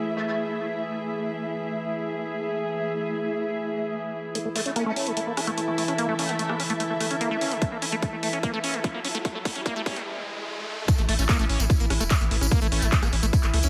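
The mix sits in a light reverb with a trimmed low end, carrying a hypnotic, psychedelic psytrance fragment in A major at 147 BPM in straight 4/4. It opens on a morphing, vintage wavetable pad holding sustained chords beside a dark, woody studio string section, bowed and lush with vibrato and placed up front, both pumping against the sidechain. At 4.4 seconds a squelchy, resonant acid bass riff arrives with chorus and digital delay, its filter sweeping through the build-up while a techno drum kit of handclaps, hats and rim clicks, re-recorded in a large room, fills out the rhythm. In the background, a metallic, aggressive FM wobble bass surfaces in short bursts through dub echo. A very quiet riser climbs under a drum fill, with a heavy layered electronic kick pushing forward from 7.6 seconds. The drop lands at 10.9 seconds, adding a jingly acoustic tambourine and a deep, round analog bass that anchors the low register up front.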